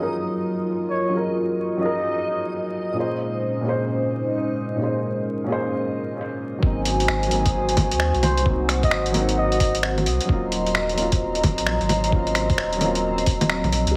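Future garage with a rainy, melancholic mood, this piece opens on a dark, woody upright piano with audible action noise, tape echo and a filter sweep through the first 6.6 seconds, over a moody, detuned analog pad with chorus, both pumping against the sidechain. A reversed, granular texture hovers softly behind them in its own reverb, while a trumpet with a bucket mute drifts in twice, first at 0.9 seconds, with a veiled, raspy, growling jazz tone, scooped notes and vibrato, trailed by tape echo. At 6.6 seconds a round sine sub bass with tube saturation arrives alongside a thumpy, pitched-down electronic kick, and at 6.9 seconds a muffled, overdriven sampler-style kit of bongos, finger snaps and hi-hat joins up front with a swung sixteenth feel. The harmony moves from Gbmaj7 and Bbm9 to Ab7 and Ebm7. A lush hall ambience and vinyl crackle give the fragment a hazy, nocturnal sheen.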